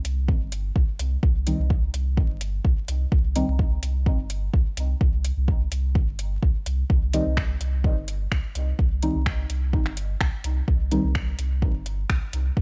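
A dry recording dusted with vinyl crackle frames this cavernous, meditative dub techno fragment, cut from a longer piece and resting on a single minor chord in a steady 4/4. An up-front, tape-warm electronic kick with small room reverb sits beside a clean, smooth sine sub bass that pumps under sidechain, while a layered deep house kit adds finger snaps and metallic hi-hats. A soft, wave-folded chord stab, dark and decaying, enters at 1.5 s through chorus, phaser, dub echo and sidechain pumping, then returns at 7.1 s.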